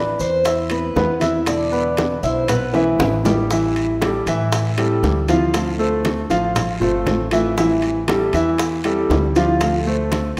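Nostalgic Cuban son and guajira cut from a longer piece, where a metallic, double-stringed Cuban tres picks a short melody that ends at 3.2 seconds, a clear, up-front concert grand piano with deep bass plays arpeggios, a dark, fingerpicked nylon-string guitar and a woody, thumpy pizzicato upright bass fill out the harmony, and background congas, raspy guiro, grainy maracas, tight bongos and ringing timbales keep time, with a drum fill around 2.7 seconds leading into a minor-seventh passage, all set in a lush hall reverb with a rough home-demo feel.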